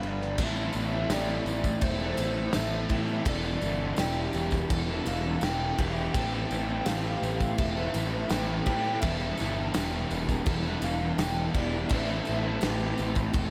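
Shoegaze and dream pop rock excerpt at 83 BPM in A minor, hazy and brooding, where a soft, round sine lead with chorus and vibrato floats over shimmering octave-doubled twelve-string acoustic arpeggios, a distorted fuzz guitar riff with lush chorus, a quiet double-tracked crunchy overdriven guitar, a dark, clean, compressed electric guitar under reverse reverb, a punchy up-front fuzz bass, a loose indie drum kit with dark cymbals and a tight kick, and a jingly tambourine entering at 0.6 seconds, all circling Am7 and Em7 in a dreamy mix soaked in hall reverb.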